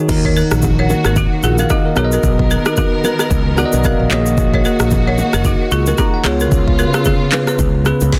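Joyful and breezy, this short afrobeats excerpt at 112 BPM with a swung 16th-note feel moves through D#m, Bmaj7, F#6/A# and C#7, as a bright, bell-like tine electric piano carries the accompaniment (adding a fill at 3.3 seconds) over a mellow, round fretless bass and an up-front, overdriven afro-pop kit with a deep kick, woody snare, handclaps, rim click, shaker and crash, while lush bowed studio strings with vibrato sustain chords, a dry balafon played with hard rubber mallets repeats a delayed riff, and very quiet congas and bongos add soft-handed color under light reverb in a dense, heavily limited modern mix.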